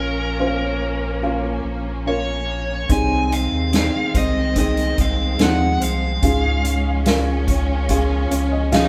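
Tender and hopeful, this short pop ballad moves at a slow 72 BPM in a straight 4/4, cut from a longer piece. A dark, smooth overdriven electric lead guitar carries the melody from the start, set over a soft, intimate felt-muted upright piano with a short, vintage sustain and a deep, round sub bass that sits up front. Distant bowed strings hold sustained chords with vibrato and portamento, giving an expressive ensemble glow beneath. At 2.9 s a fingerpicked, full-bodied steel-string acoustic guitar enters in the background with arpeggios, joined by a roomy soft-mallet drum kit with a punchy kick, medium-tuned snare, hi-hat and a rolled-off top. The harmony moves from A#m to G#/B# and on to C#, and the piano adds a brief fill from 7.9 s. A moderate stone-room reverb frames the band, which plays live together in one space.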